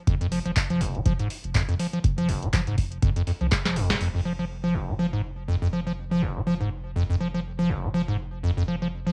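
Cut from a longer piece and captured at home on cassette with a moderate studio reverb, this hypnotic, driving acid house track runs at 122 BPM in F minor with a swung 16th-note feel. A squelchy, hollow square-wave acid bass carries the up-front riff with a resonant filter sweep and a fast, decaying attack. A thick, saturated triangle sub bass pumps beneath it. Until about 4.0 seconds, a deep, tape-warm electronic kick and a booming analog drum machine with crisp snare, metallic hats, handclaps and crash drive the groove, ending in a drum fill from 3.5 seconds and a band accent at 3.9 seconds, after which the two basses carry on together.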